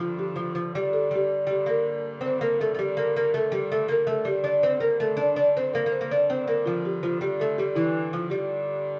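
Ancient and mysterious, this short excerpt from a longer piece is a medieval dance in G dorian, moving at 108 beats per minute in a straight 6/8, tuned slightly below standard pitch at A4 = 437 Hz. A buzzing marimba played with soft mallets carries the melody up front, its hardwood bars sounding woody, dark and round. Beneath it a fingerpicked lute plays a second line on double nylon strings, some doubled at the octave, giving a delicate acoustic counterpart that also sits close. Further back, a wheel-bowed hurdy-gurdy holds a low drone, its tone nasal yet even. All three parts play together from the start to 9.0 seconds, heard as a band performing live in one room with a wet studio ambience.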